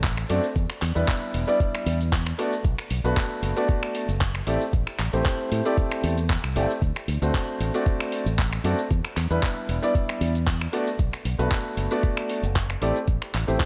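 Soaked in plate reverb for a dreamy feel, this cosmic, sleek nu-disco excerpt sets a punchy, up-front fingered electric bass with an envelope filter and a thumpy, gritty electronic kick beneath a dusty, tape-warm sampler-style soul kit of finger snaps, handclaps, hi-hat and shaker, swung lightly on the sixteenths, while a clear, long-sustained grand piano enters at 0.3 s, pumping with sidechain and trailing delay over a cycling seventh-chord progression.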